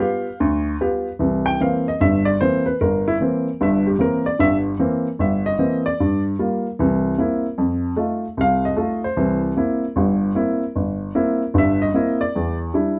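The sound is dark and close, with light reverb around an intimate baby grand piano placed up front, its action noise plainly audible. This is a brief, swinging jazz fragment cut from a longer performance, playful in mood and moving in 4/4 with swung eighth notes. The piano plays solo throughout, ranging from G1 up to G5 with a natural, warm tone and short sustain. After an opening G7, the harmony shifts to C7 at 1.2 s as a new passage begins, then moves through Gm7, C7 and F7 before returning to C7. It touches Em7 near 12.3 s, just before the fragment breaks off at 13.0 s.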